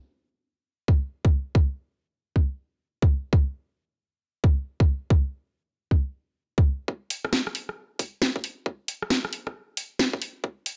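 A tight, layered electronic kick drum, high-pass filtered and up front, drives this soulful, late-night UK garage excerpt at 135 BPM with a 64% swing on the 16ths, joined at 7.1 seconds by a garage drum kit of cracking snare, bright low-pass-filtered hats and rim clicks as the build-up begins, all set in a digital ambience.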